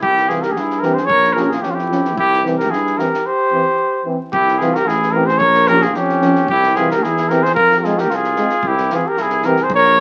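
Virtuosic and fiery, this Balkan brass band excerpt in C phrygian dominant moves at 112 BPM in a straight 2/4, with a mellow, lightly vibrato-tinged trumpet carrying the classical-style melody up front over a dark second trumpet, a tuba bass line with light vibrato, a warm French horn in the background and a trombone with vibrato in support, while a compact cocktail drum kit with a punchy kick and a dry, high-tuned snare keeps time over C, Bbm and Fm chords, all bathed in wet studio reverb and the crackle of a very old 78 rpm record.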